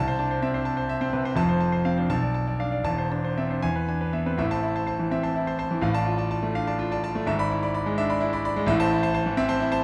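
Agitated and passionate, this short cut from a longer classical virtuoso piano study in A minor moves in a rubato 6/8 at roughly 77-87 BPM counted in dotted quarters, tuned to A4 = 439 Hz. A solo concert grand, clear and natural with a deep bass and placed up front, ranges from E1 to B5 as the harmony passes through F, Bm7b5 and E before a new phase begins at 4.4 seconds on A minor. From there it travels through Dm/A and E7/G# back to A minor at 8.7 seconds, all set in a moderate recital-hall reverb.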